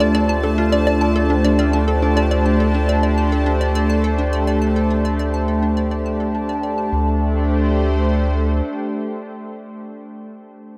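Ambient, sequencer-driven space music with an expansive, hypnotic mood: a lush, detuned unison pad with chorus and a round, deep analog bass sit up front, while a bouncy, hollow square pluck riff with delay, a fingerpicked concert harp ringing in the background until 4.5 seconds, and a bubbling, resonant stepped-filter texture drift through a vast cathedral reverb, the synth arpeggio sound fading out over the opening 6.9 seconds before the harmony changes.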